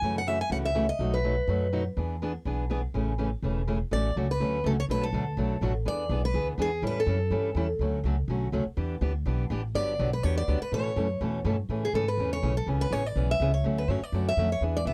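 A dry, close 1970s-style studio sound frames this playful, swinging slice of acoustic jazz manouche cut from a longer piece, where a warm picked steel-string guitar carries the melody in bursts before taking a solo from 11.7 s, a dark second picked guitar supplies accompaniment throughout, and a woody, thumpy pizzicato upright bass sits up front beneath them both.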